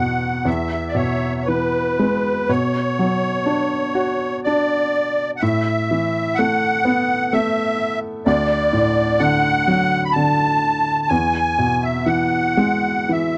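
This is a Celtic folk slow air in three-four time, wistful and tender, with an uneven, rubato pulse that lets each phrase breathe. A musette accordion carries the melody in a fairly high register, its reedy, shimmering wet tuning giving the line a vintage, band-limited color. Beneath it, a felt-muted upright piano supplies the accompaniment from the bass up into the middle range, soft and mellow with short sustain and the audible clatter of its action. Both instruments sit up front in a dry, close recording with little reverb, which lends the performance an intimate, 1970s studio feel. The harmony moves from E through B minor with an added ninth, A suspended, and D before returning to E, and the passage is cut from a longer piece, ending at 13.4 seconds.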